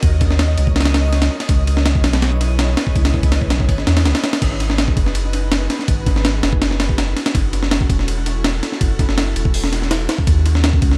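An ethereal, airy pad of detuned sawtooth voices opens the music at 0.0 seconds, holding slow-blooming chords through ensemble chorus and reverb, joined at once by a twinkling granular texture that sparkles with an octave-up shimmer in the background. This is nostalgic, dark drum and bass with a jungle edge, in G# minor at 164 BPM, and it is cut from a longer piece. A breakbeat sampler-style drum kit sits up front, gritty and compressed, pitched up with a thumpy kick, a high-tuned snare, hi-hat, ride and crash cymbals, all colored by studio reverb and analog delay. Beneath it, a soft dub sub bass adds a deep, round foundation with a fast attack and sustained notes. The granular texture drops out at 4.4 seconds as the chords move from D#m7 and C#m7 to G#m7 and F#m7, leaving the pad, bass and drums to carry an echo-heavy digital ambience through to 11.0 seconds.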